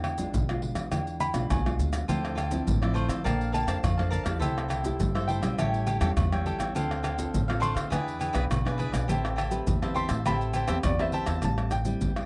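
An intimate grand piano with audible action noise and a short sustain carries the yearning yet lively melody of this samba and choro fragment from 1.2 s, over fingerpicked nylon-string guitar with a full-bodied classical depth, woody pizzicato upright bass, crisp picked cavaquinho from 2.1 s, and up-front, band-limited agogo bells, pandeiro, tamborim, maracas and deep surdo struck with hard hands, all set in a dry, close 1970s-style studio sound with light reverb.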